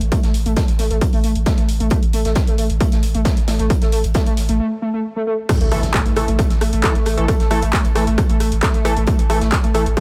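Driving peak-time techno at 134 BPM in a straight 4/4, this hypnotic excerpt from a longer piece rides an overdriven, up-front electronic kick, a layered, overdriven techno kit of crash, handclaps, hi-hat and rim click, a thick, saturated sine sub bass pumping under the sidechain, and a background acoustic rock kit of filtered hi-hat and snare with a big-room character. A gritty, screaming, guitar-like synth lead carries the riff with vibrato, distortion, subtle chorus and delay, and after a brief break from 4.6 seconds the drop lands at 5.5 seconds on an A5 chord, marked by a very quiet electronic impact. From 5.7 seconds an edgy sync-sweep polysynth adds nasal, chorused stabs with delay, all in a dry mix with little reverb.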